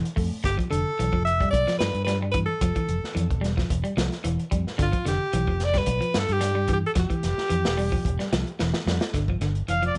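Afrobeat with a driving, hypnotic pull, taken from a longer piece in a straight four-beat feel. A slightly broken-up, picked electric guitar sets up low arpeggios while a crunchy, saturated breakbeat kit sits up front in a studio-room sound, its tight kick, medium-tuned snare and hi-hat carrying a gritty edge and a rolled-off top. Underneath, a fingered electric bass lays down a dark, round, amped line as the harmony moves between G7 and Fmaj9 chords and their suspended and open variants. A clear alto saxophone with light vibrato takes the solo melody in a present pop style until a drum fill at 8.6 seconds. At 9.7 seconds a close-miked trumpet enters, raspy and growling, with scooped notes and vibrato, before the cut at 10 seconds, all framed by light reverb.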